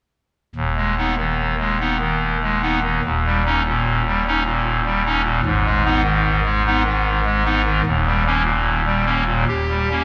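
A lone pipe organ enters at 0.6 seconds, sounding a clarinet reed solo stop with a hollow, baroque voicing and a chiff at the start of each note. This short, chorale-style classical passage, cut from a longer piece, moves at about 74 BPM in 3/4 with a rubato feel, its mood dark and grave in G# minor at a tuning of A4 = 443 Hz. The harmony rocks between G# minor, first heard over D# in the bass, and D#7, returning to the home chord at 5.4 seconds. The organ spans from a deep D#1 up to G4, its tremulant lending the reed tone a waver while the instrument sits up front in the sound. A wet cathedral reverb with a 4.5-second decay surrounds the playing, giving the solo a vast, solemn space until it stops at 10.0 seconds.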